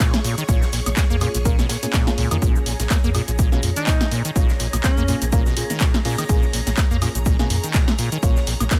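Raw and gritty, this acid house excerpt in Bb minor runs at 124 BPM with a swung 16th feel, as an overdriven, up-front electronic kick and a punchy analog drum machine with handclaps, hi-hat, shaker, snare and woodblock drive a squelchy, resonant acid bass riff with filter sweeps, a round sine sub bass, lush phased string-machine chords, dark nasal chord stabs with cassette-tape colour, and a very quiet dry funk kit, all over a Bbm7 chord, while a breathy alto saxophone briefly sings a short jazz-style phrase from 3.8 to 5.2 seconds.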